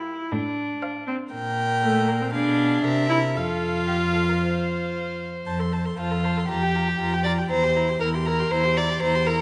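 A quick classical-period movement for string quartet in F major, this passage moves at 118 BPM in a straight 4/4 and carries a restless, dramatic mood, tuned slightly low at A4 = 437 Hz. The first violin carries the melody high between E5 and C6 with a close, airy bow and a nasal edge, while the second violin supplies a second line beneath it with a light vibrato. The viola fills in the accompaniment, sounding somewhat distant for all its reedy presence, and the cello enters at 0.3 s with a close bass line. All four players share a gut-string, period-style tone that gives the ensemble a reedy color, with the lower three parts sitting up front and the top violin a little softer. The harmony passes from F/A through Gm/Bb, a Bdim7 and C7 before settling on F, and after the shift to a new section at 5.5 s it turns through Gm7/F and C7/E, all heard in a moderate scoring-stage reverb that lets the sound bloom briefly as this cut from a longer piece runs to 9.4 s.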